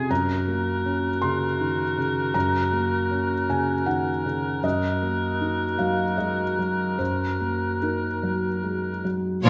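Heard in a wet recital-hall reverb, this moving, bittersweet cinematic orchestral excerpt in a rubato 3/4 opens with a soft, felt-muted upright piano up front, its action noise audible, beneath an airy, hollow flute and a soft-attacked clarinet in the background and a vintage-toned cor anglais with light vibrato, until at 9.5 s a lush, bowed violin section and a smooth, close cello section enter.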